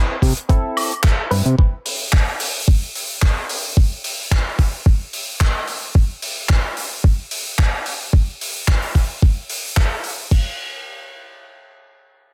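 Nu-disco with a sleek, cosmic mood, cut from a longer piece and set in a lightly swung 4/4 groove. A bright, twangy clean electric guitar, picked and recorded direct, opens with a short riff over a Cmaj7 chord, colored by analog chorus, a low-pass filter and digital delay, and it stops at 1.5 seconds. A fat analog bass joins at 0.2 seconds with a thick, saturated tone that blends sawtooth, square and sine waves, detuned and wave-folded, with a filter sweep and a mellow sustain, dropping out by 1.6 seconds. From that same 0.2-second mark, a gritty, thumpy electronic kick with a tape-warm, compressed sampler character sits up front alongside a dry, airy acoustic funk kit of crash cymbal, handclaps, hi-hat and woodblock, and both carry on to 10.4 seconds once the chord gives way. There is little reverb, and the master is dense and heavily limited.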